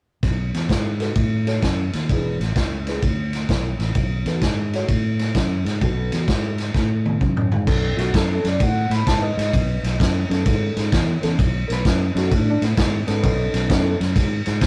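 Laid-back and rollicking, this electric blues shuffle swings along at 129 BPM in 4/4, sitting in B mixolydian and moving from B7 to E7 to B9. It is cut from a longer piece. A vintage acoustic drum kit sits up front with a punchy kick, a medium-tuned snare, toms and dark cymbals, its rolled-off top giving the crash and ride a mellow edge. A fingered electric bass, round and dark, holds down the low end. An overdriven reed electric piano enters at 1.0 seconds with a gritty, reedy tone pushed through a combo amp and colored by phaser, sitting a little lower in the mix until it drops out at 14.0 seconds. A drum fill at 6.8 seconds marks the turn into the second half, and the whole take carries the rough feel of a rehearsal room, with snug booth ambience and warm saturation.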